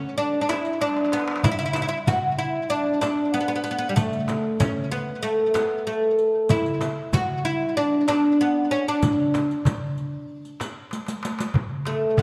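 A warm mix in a moderate recital hall reverb frames this festive, passionate Arabic maqam ensemble passage in D maqam ajam at 95 BPM in straight 4/4, cut from a longer piece, where a woody, plectrum-plucked fretless oud with double strings carries the melody up front through tape echo, joined at 0.3 seconds by a crisp metal-shell darbuka set back in a large room and then at 0.5 seconds by a small frame drum played close with hard hands and a close riq with dark jingles, with drum fills at 0.8 and 10.9 seconds.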